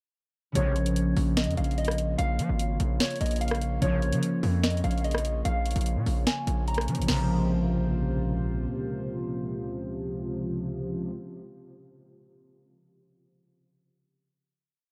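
A distorted 808-style bass dominates this short, brooding trap piece, its saturated, heavy sub-bass notes sliding in pitch under a half-time beat. The trap drum kit keeps sharp snare, rim clicks, crash and bright hi-hats with fast rolls close up front until 7.2 seconds. Over the top, a mellow electric guitar plays a dark, clean, fingered melody that repeats like a sampled loop, softened by spring reverb. A concert harp rings out open, held chords in the same looping manner, while a warbly, nostalgic tape-like pad sustains lo-fi chords beneath. A juicy, resonant polysynth with a filter sweep adds brief stabs early on, then returns with stabs through the final Bbmadd9 chord from 7.1 seconds, bringing the piece to a dark, dry, melancholic close.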